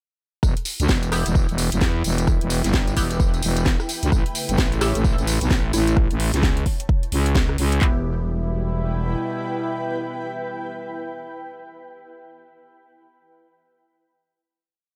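A punchy four-on-the-floor kick and clap drive this bouncy, aggressive bass house piece at 130 BPM in 4/4, with a 16th-note swing that gives the metallic hi-hats, cracking snare, rim clicks and jingly hand-played tambourine sixteenths their lilt. The drop hits at 0.4 s, led by a thick, growling FM bass with tube saturation and sidechain pumping, its chopped phrases sitting up front in E dorian as the harmony moves from E minor to A. Around it, nasal band-passed sawtooth chord stabs echo sparsely through phaser, chorus and delay. A blurred granular cloud pad and an evolving resonant sawtooth pad with a filter swell breathe with the sidechain. At 4.8 s a round, warbling, keys-like synth lead adds short answering phrases in the background. From 7.8 s the piece settles onto a closing E minor chord, where the pads and stabs ring out in a digital ambience.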